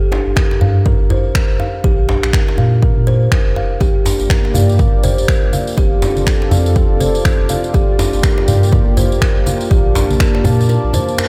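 Set in a small room with light reverb, this short excerpt of spiritual afro house moves at 122 BPM in 4/4 with a swung sixteenth-note feel in G minor. A deep, round sine sub bass pumps against an overdriven, punchy electronic kick placed up front, while a woody, hollow-bodied kalimba rings out bright thumbnail-plucked arpeggios through tape echo and the same sidechain pumping. A medium-tuned djembe sits in the background of a live room, and electronic finger snaps mark the groove. At 3.8 seconds a smooth, mellow analog pad with chorus and a sub octave fades in on sustained chords alongside a jingly, close tambourine, and low-tuned, thick-skinned congas join very quietly at 4.5 seconds. The harmony cycles through Gm7, Bb5, F6 and Bbmaj7, and the kick stops at 10.3 seconds while the other layers carry on.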